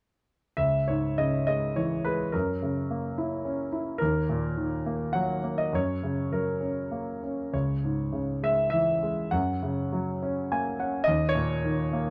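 Moody and bittersweet, this short passage of lyrical classical solo piano is cut from a longer piece and moves in a flowing triple metre with a free, rubato feel. A single concert grand carries everything from 0.6 to 12.1 seconds, its tone clear yet slightly worn, with a deep bass reaching down to C#2 and a range extending up to G#5. The instrument sits up front and present, its notes carrying a short sustain that keeps the lines distinct. The harmony drifts through C# minor, F#7, D# minor and F# before settling on an open D#5, and a brief piano fill at 10.2 seconds leads into that final chord. Light reverb and a dark, warm production give the recording an intimate, shadowed character.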